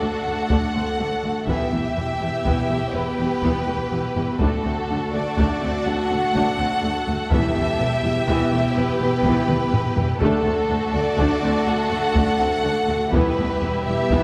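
Lush bowed strings open this dark, relentless cinematic orchestral cue in E minor at 82 BPM in 12/8, where a focused violin melody rides over a distant second violin line, smooth violas, clear sustained string chords, mellow French horns, rich cellos and woody double basses, with heavy-stick taiko entering at 0.5 s, very quiet timpani first sounding at 7.3 s and a drum fill at 9.5 s, the whole orchestra heard from further back in a wet scoring-stage space.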